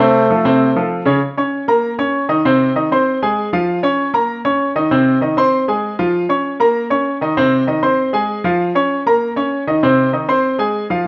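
Latin music at a brisk 195 BPM in 4/4 with a straight feel, set in B-flat minor, danceable and passionate in mood. A bright, punchy trombone starts together with the piano, carrying a brief solo line in a pop style, touched with light vibrato and placed up front, sounding only until 0.9 seconds. The clear grand piano carries the accompaniment across the full 11.1 seconds, present and forward in the mix, ranging from C3 to Db6. After an opening F chord, the harmony swings back and forth between B-flat minor and A-flat every bar or so, giving the progression a cyclical quality. A moderate large-studio reverb lends the short excerpt, cut from a longer piece, a sense of open space.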